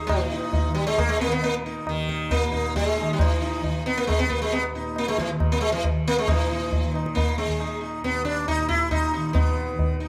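Moving in a straight seven-beat cycle, this serene, radiant Hindustani classical excerpt sets an up-front sitar melody, bright and buzzing with shimmering sympathetic strings under the plectrum, over a mellow, softly plucked tanpura drone sitting low beneath it. Low-tuned, ringing tabla plays close and dry from 0.1 s to 9.9 s. The whole performance sits in a moderate recital-hall reverb, captured by detailed close microphones, and moves into a new section at 6.3 s.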